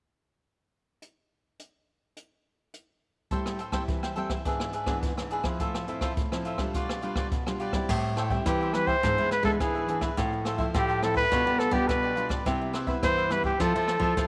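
Nostalgic and yearning, this samba and choro excerpt opens at 1.0 seconds with a brushed jazz drum kit alone, its dark cymbals, boomy kick, hi-hat and rim clicks sitting up front in a small, natural-sounding room. At 3.3 seconds a crisp, picked cavaquinho and a bright, full-bodied fingerpicked nylon-string guitar join in, with audible finger squeaks, as the harmony moves through Am7, E7/G#, Fmaj7/A and G7/B. Around 7.9 seconds a second nylon-string guitar takes the bass role with a deep classical tone, and the same progression returns before turning to Cmaj7 and Fmaj7. Just after, a warm trumpet steps forward as the solo voice, punchy and jazz-styled with vibrato, singing a compact melody. Light reverb gives the close, intimate setting a touch of air.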